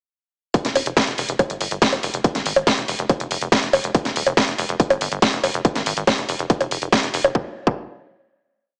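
Alien and psychedelic, this brief psychedelic trance piece is a single drop from 0.5 seconds that gives way to a final note at 7.3 seconds. A distorted four-on-the-floor electronic kick sits up front beside a layered techno drum kit of cracking snare backbeat, programmed hats and bongos, both re-recorded in a large room. A tight, punchy sequencer bass rolls in sixteenth notes with a saturated, wave-folded sawtooth bite, a filter pluck and a moving notch, all within light reverb and a small-speaker sound.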